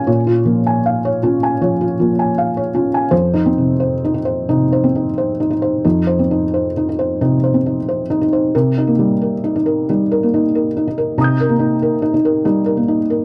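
A felt-muted upright piano, dark and mellow with thick felt and audible action noise, plays solo and up front in this peaceful, intimate neoclassical minimalist fragment from a longer piece, drifting in a rubato 4/4 at roughly 74-94 BPM from Bbm7 to a new section at 3.1 seconds on F5 and then Cm7, its range reaching from F2 to G6 in a dry, close 1970s-style studio sound touched by light reverb.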